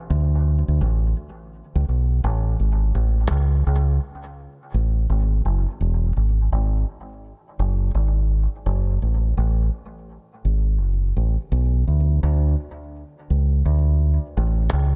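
Reggae excerpt at 84 BPM with a swung sixteenth-note feel, laid-back and meditative, where a deep dub fingered electric bass plays alone from 0.1 to 15.0 seconds, its dark, round, punchy tone sitting up front with dub echo in a dry, dull-topped sound that shifts into a new section at 2.9 seconds.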